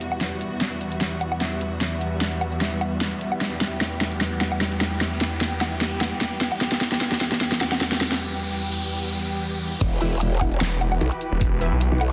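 Driving at 150 BPM in 4/4 with a half-time feel and a light swing on the sixteenths, this heavy wobble dubstep excerpt in E minor carries a menacing weight from the first beat. For the opening 9.8 seconds a build-up unfolds: muted, con sordino strings hold dark, veiled chords that pump against the sidechain under a low-pass filter, while a deep, moody sawtooth pad with a sub octave and chorus sits in the background until 8.2 seconds. The overdriven dubstep kit stays up front throughout, its huge snare joined by crash, hi-hat and woodblock in a drum fill before a short break, as a very quiet electronic riser gathers toward the drop. At 9.8 seconds the drop lands with an impact, a layered, knocking electronic kick and a growling, wobbling bass shaped by a formant filter and saturation. A bold, punchy orchestra-hit-like stab flickers in very quietly, and a snarling sawtooth bass with a moving notch and heavy distortion adds an aggressive second low layer. 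A moderate plate reverb surrounds the dense, heavily limited modern master.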